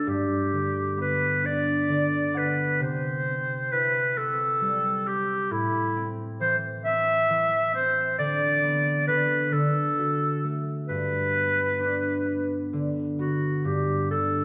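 A lush, church-like reverb surrounds this gentle, sleepy piece of children's music in a steady 6/8 feel, cut from a longer work. A clear clarinet with light vibrato and a soft attack carries the melody up front, its vintage, jazz-tinged phrasing drifting over a fingerpicked concert harp whose ringing tones fill in the harmony throughout. The harp adds a fill from 1.4 to 2.8 seconds before the tune settles into a lullaby-like progression that returns home to G.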